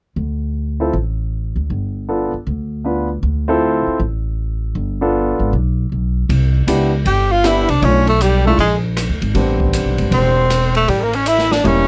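A bright, up-front tenor saxophone carries the melody from 7.1 seconds, scooping into notes with a jazz vibrato, while a trumpet sits in the background on a smooth-topped second line. This playful, swinging small-group excerpt in C major at 157 BPM opens at 0.2 seconds with a woody, thumpy pizzicato upright bass on gut strings, soon joined by a polished grand piano with long sustain, and an open drum kit with dark cymbals and a boomy kick enters at 6.3 seconds. The sound is dry, with little reverb.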